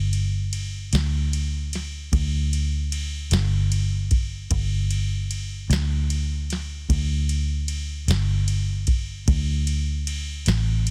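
Slow blues in 12/8 at 50 BPM, laid-back and gritty, with a dark, round, foam-muted fingered electric bass sitting up front and a soft vintage rhythm box with a deep kick, crisp snare and ride cymbal, its overdriven grit entering at 0.1 seconds, all in a dry, dense, heavily limited mix cut from a longer piece.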